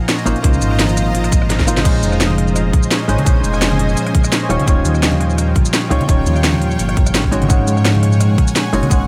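A clean, dark hollow-body jazz guitar with dub echo, a bright, shimmering ambient pad with chorus and sidechain pumping, and a fingerpicked concert harp with 12-bit sampler grit open this soulful, lush liquid drum and bass excerpt in Bb minor at 170 BPM, quickly joined by a tape-warm kit of cracking snare and crisp hats, a deep, rumbling detuned saw bass, and a tight, up-front electronic kick, with a drum fill at 1.5 seconds and very quiet, close congas entering at 1.8 seconds as the chords move from Dbmaj13 through Bbm11 and Eb9 to Ab7sus4.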